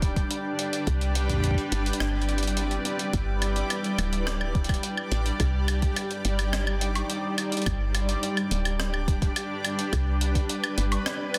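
IDM with a playful, glitchy mood, cut from a longer piece and moving in a straight 4/4 pulse. A cloudy, blurred granular pad holds sustained chords up front, evolving with its own reverb and a sidechain pumping that makes it breathe, while the harmony sways between G and Cmaj9, darkening briefly to Cmadd9. Beneath it a woody, round FM bass sits close with fast-attack, decaying notes, and a soft electronic kick drum carries the beat until it falls away at 10.5 seconds. A gritty, tape-tinged jungle sampler-style kit, pitched up and compressed, adds hi-hat, rim click and woodblock, with soft clipping on the snare. In the background a bubbling, resonant sawtooth texture steps through random filter changes, thickened by chorus and reverb, all inside a light room sound and a dense, heavily limited master.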